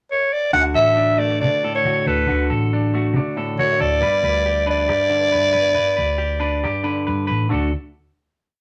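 Highlife guitar band music with a sunny, danceable mood and a lightly swung sixteenth-note feel, this short complete piece opens with a growling clarinet pickup at 0.1 seconds. The clarinet carries the melody up front as a jazz-style solo, its close-miked tone raspy and gritty with a light vibrato, built from motif-based call phrases. At 0.5 seconds a semi-hollow electric guitar and a hollow-body short-scale electric bass enter together to set up the groove over a move from D to G. The guitar is bright, clean and compressed, playing a syncopated fingerstyle accompaniment, while the fingered bass sounds dark, round and amped as it plays a dotted figure. A moderate studio reverb gives the band a modest sense of room, and the piece closes on a final D chord from 7.5 seconds.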